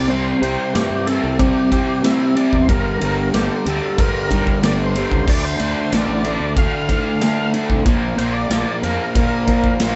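A band playing live in one moderately ambient studio room, with a dark top end, frames this gritty, swaggering classic rock excerpt in D minor at 93 BPM, moving through C, Gm, Dm and Bb5. Up front, a crunchy, double-tracked overdriven guitar picks the riff through harmonic tremolo, while a round, fuzzed fingered electric bass holds the low end and a big acoustic rock kit enters at 0.4 s with punchy kick, medium-tuned snare, ride and crash. Above them, a thick tonewheel organ carries the melody with key click, chorus vibrato and a slow rotary speaker.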